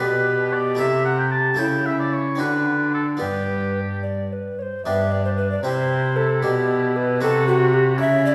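A hollow, airy tenor recorder carries the melody of this flowing, radiant baroque-style sonata movement in G major, its tongued, woody tone with a touch of chiff heard close, while a clear oboe with light vibrato sings a second line from a more distant place in the room. A bright, plucked harpsichord fills in the accompaniment and a nasal, gut-string cello bows the bass, all moving in a straight 6/8 at 76 dotted-quarter beats per minute. The wet reverb of a recital hall surrounds this short passage cut from a longer piece, which shifts into a new section at 4.8 seconds.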